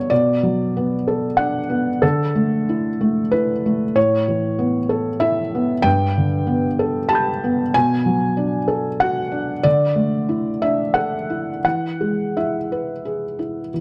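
A felt-muted upright piano opens the fragment alone, its thick felt giving each note a soft, mellow edge while the audible action noise keeps it close and intimate. This is tender neoclassical minimalist piano in a gentle three-beat metre, played with a flexible rubato feel. The harmony drifts through open, unresolved colours, moving from Bm7 to Dsus2, Asus2 and Gadd9 before the cycle returns and settles on an E chord near 11.6 seconds. The instrument sits up front across a span from G2 to G6, framed by light reverb within a dark production. Lifted from a longer piece, it stops at 13.8 seconds.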